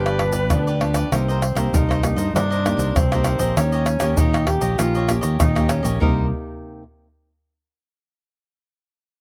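A straight 4/4 groove at 98 BPM drives this yearning, lively samba and choro fragment in C minor, where a close, dry tube shaker, pandeiro, tamborim and tight surdo played with soft hands sit up front beside a dark, round fingered electric bass, while a bright, picked cavaquinho and a small, fingerpicked nylon-string guitar outline chords moving from G7 to Cm7 and Eb7; an airy wooden flute with vibrato and a crisp attack sounds only until 0.8 seconds, and a breathy, whispered tenor saxophone with subtone and scooped notes carries a distant jazz-style second line, both touched by slapback echo in an outdoor recording with little reverb, before the guitar rings on alone until 6.8 seconds.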